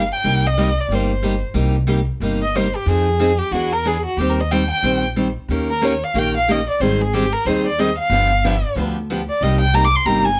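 A bowed violin with vibrato, portamento and a smooth top sings up front and breaks into a fiery, virtuosic solo from 1.6 seconds, over a bright picked steel-string acoustic guitar with audible finger squeak and a woody, thumpy pizzicato upright bass, all in a swinging acoustic string jazz manouche groove set in a moderate studio reverb.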